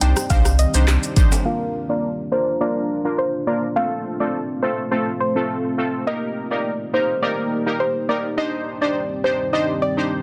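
Summery and sunny, this dancehall excerpt moves at 104 BPM in a straight 4/4 in Bb major, cut from a longer piece. A soft, round pluck carries the melody between C5 and G5, its dark tone touched by chorus, a low-pass filter and tape echo, while a punchy, detuned sawtooth brass stab supplies bright accompaniment up front. Beneath them a deep, moody ambient pad holds warbling, vintage-tinged chords with chorus, built-in reverb and sidechain pumping, moving from Cmadd9 through Bb, F and Eb before returning to Cmadd9. For the opening 1.3 seconds a round sine sub bass sits up front alongside an electronic afro-pop kit with a deep kick, dark hats, handclaps, rim click and shaker, plus softly clipped snare, and a bright egg shaker and timbales play in the background, all falling away by 1.4 seconds. From 1.5 seconds a filter sweep runs to the end as the pluck, brass and pad continue, all within light reverb and a dense, heavily limited modern master.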